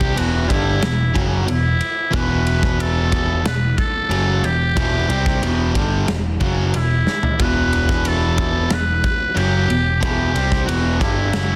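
A dense, heavily limited modern mix with light reverb and small-room ambience carries this aggressive, menacing hard rock excerpt, where a buzzy, raspy metal-muted trumpet sings the up-front melody through analog delay over bright and hollow-body overdriven guitar riffs, a growly picked electric bass and a dark big rock drum kit with a punchy kick, which drops in a brief fill at 7.1 seconds.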